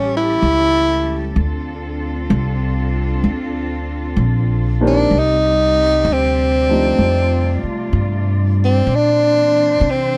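A breathy tenor saxophone leads this tender, late-night jazz ballad at a slow 64 BPM with a lilting swing, its subtone, vibrato and scooped notes sitting up front over a woody pizzicato upright bass. A dark, mellow grand piano stays in the background, while muted cellos hold veiled, softly bowed chords beneath. The piano stops at 8.9 seconds as the saxophone solo carries on, and the close, dry sound catches every detail while the chords move from A7 through Dm7, Cmadd9 and F13 to Bbadd9(#11) in this short cut from a longer piece.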